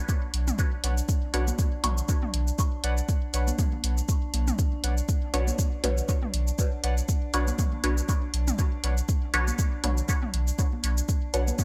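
Cavernous and hazy, this dub techno excerpt moves at 120 BPM in B minor with a light 16th-note swing, resting on a single Bmadd9 chord throughout. A deep, layered electronic kick sits up front beside a round, sine-like sub bass whose tube saturation and sidechain pumping give it a breathing pulse. Around them, tape-flavoured shaker and hi-hat sound as though re-recorded in a small room, while overdriven electronic toms and congas stay in the background, trailing dub echo. A metallic, inharmonic FM drone hovers quietly with a slow attack, chorus and its own reverb, and warbly lo-fi synth keys add a nostalgic, decaying riff soaked in chorus and echo. A muted, detuned chord stab with a filter pluck and phaser flickers briefly near the start, then returns at 5.3 seconds and carries on through a bright, lightly reverberant 1980s-style digital production.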